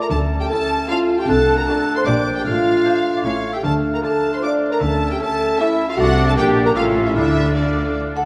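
In a straight 3/4 at 153 BPM, this short excerpt of a playful, whimsical film cue in D minor has a sneaky, magical air. Two bowed violin sections carry the melody and a second line, joined by an airy flute ensemble in the background, while a clarinet and distant oboe add further lines, a dark bassoon and a lush, distant viola section fill in the accompaniment, and the dark French horn section holds prominent sustained chords over close, focused cellos and expressive double basses. The harmony moves through A/D, D7/C and Gm/Bb before settling on Dm, all in a reverberant concert hall, and at 8.2 s a ringing, metallic vibraphone strikes a single up-front F#5.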